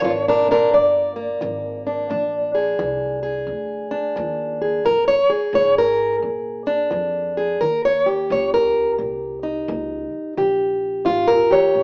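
A swung 4/4 groove at 87 BPM carries this gritty, soulful acoustic country blues excerpt in Bb mixolydian, where a boxy, parlour-toned, plugged-in steel-string acoustic guitar plays an up-front fingerpicked solo from 0.0 to 11.8 s over Bb7 and then Eb7 at 7.6 s, while a woody pizzicato upright bass sits far back in the mix, the pair sounding like a band playing live in one large studio room with moderate reverb and a small-speaker character.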